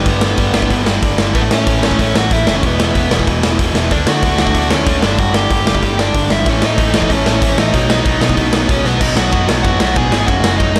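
A raw garage drum kit sits up front and hits hardest, its punchy kick, medium-tuned snare, hi-hat, ride and crash sounding gritty and saturated in a bright stone room that pumps around them, with the top end rolled off. This is an upbeat, rebellious punk rock excerpt in a straight 4/4, cut from a longer piece, with the drums coming in at 0.1 seconds. A dark, smooth lead guitar carries the melody through overdrive and tape echo, while two overdriven rhythm guitars, a cranked stack and a hollow-bodied semi-hollow, play the riff in the background with a bright edge. An overdriven picked electric bass growls underneath, amped and punchy. The chords move from G through A, E5, D, G5, A and B, and a drum fill at 8.8 seconds kicks the band into a new section at 9.0 seconds, landing on F#5 near the end, all captured dry with little reverb.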